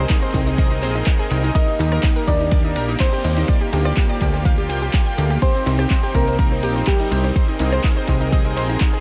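A lush, airy supersaw pad with vintage 12-bit grit and a bright, warbling analog pluck arpeggio open this bittersweet progressive house excerpt, both pumping with the sidechain over a punchy, funky analog bass, with tape echo on the pluck. From 0.1 s a deep, up-front electronic kick is layered with a deep house kit of handclaps, smooth hats and rim clicks, while a very quiet, gritty breakbeat kit adds dark cymbals and a high-tuned snare. Between 1.6 and 7.3 s a grand piano melody with long sustain, sampler grit and tape echo sits in the background, joined by a soft, round, very quiet pluck line, all in light reverb and studio ambience.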